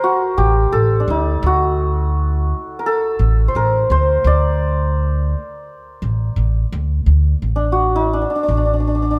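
Closely miked with fine detail and a light touch of reverb, this short passage from a longer Persian modal ensemble piece in D dastgah homayun moves at a stately 85 BPM in a straight 4/4. A hammered santur carries the melody from the start, its shimmering, ringing tone sitting up front, and a pizzicato upright bass with steel strings joins at 0.4 s with a woody, warm low line. The music shifts into a new section at 7.1 s, keeping its dignified, glowing mood to the close.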